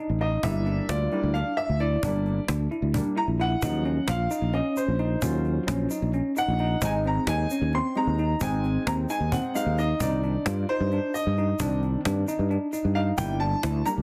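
A restless 7/8 pulse at 264 BPM counted in eighths drives this tense, brooding progressive instrumental, played straight and cut from a longer piece. A snappy, close and dry cajon with snares is struck with hard hands, and from 3.6 seconds a grainy egg shaker joins quietly in a live room. Up front, a growly, bright fretless electric bass sustains low notes between G1 and G2, while the concert grand piano carries the lead with deep bass, a boxy body and long sustain, treated with plate reverb across its range from Eb3 to C6. Beneath it, a worn, slightly out-of-tune tine electric piano plays arpeggios in a narrow span, lightly overdriven through its built-in speakers with delay and plate reverb. The harmony moves from Gm through Ebm7, Ab and Cmadd9 before returning to Gm, all set in a moderate studio room and a dense, heavily limited modern master.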